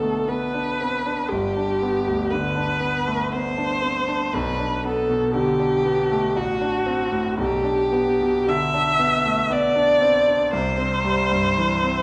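A slow, rubato 3/4 at 59 BPM gives this romantic classical duo in G major a serene, unhurried sway, cut from a longer piece. Up front, a single bowed viola carries the melody between F#4 and E5 with a focused, vibrato-rich tone and a smooth top, while a brilliant concert grand piano accompanies from G1 to D4 with deep bass, moving from G through D7/A to a closing C. Both instruments sit in a recital hall reverb of about 1.5 s that gives the sound a glowing, church-like space.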